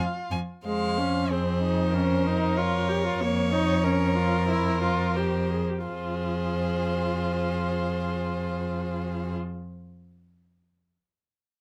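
Restless and urgent, this short passage cut from a longer piece is a quick classical-period movement for string quartet in F minor, moving in 2/4 at roughly 84-97 BPM with a rubato feel that slows between 2.6 and 5.9 seconds. The first violin carries the melody with a clear, smooth and even tone, its vibrato close and present, while the second violin shapes a second line with an expressive, warm sound and touches of portamento. The viola fills in the accompaniment with a rich, expressive voice that sits more distant in the blend, also sliding between notes with portamento. Beneath them, the cello anchors the bass on a low F, focused and up front with a smooth top. All four players are heard throughout, recorded with close, detailed microphones and little reverb, as the harmony moves from F minor through B-flat minor over F and an F minor chord with an added eleventh before returning to F minor at 5.9 seconds.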